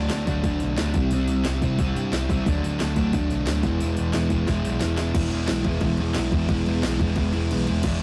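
Rebellious and rowdy, this punk rock passage cut from a longer piece sets a dark, double-tracked sludgy distorted guitar riff up front over a growly overdriven picked electric bass and an electronic house drum kit with a punchy kick, cracking snare and metallic hats, heard through a rough rehearsal-room sound with warm saturation and small room reverb, as a drum fill at 4.5 seconds leads into a new section before the kick and snare drop out at 7.5 seconds.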